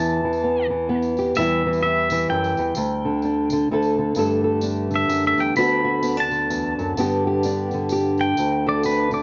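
Clean, compressed pedal steel guitar sits up front with fingerpicked slide lines, volume swells and analog delay in this hopeful acoustic folk fragment at 128 BPM in a swung 3/4 in G major, carried by a small, dark-toned fingerpicked nylon-string guitar on fresh strings and a jingly tambourine from 0.3 s, with a reedy, breathing pedal harmonium adding sustained background chords from 4.2 s as the steel takes its solo, set in a moderate studio ambience with a warm production.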